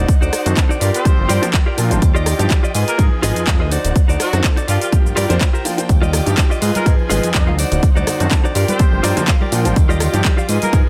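A reverb-washed studio mix, with most parts pumping against the sidechain, carries this funky, feel-good slice of filtered disco house, cut from a longer piece and built on an up-front, punchy electronic kick with overdrive, a layered house kit of handclaps, bright hi-hat, rim click and shaker, and a fat, detuned sawtooth analog bass with tube saturation and a filter sweep. A clean, scooped electric guitar recorded direct plays a riff and adds a fill at 8.8 seconds, while an intimate grand piano with audible action noise and a phaser accompanies over chords such as D7b9, Gm7, Ebmaj9 and Abm6, and a distant, roomy horn section carries the melody in octaves with dub echo. Rich, bowed strings with vibrato hold sustained chords in the background, and ringing tambourine and congas enter very quietly at 5.9 seconds.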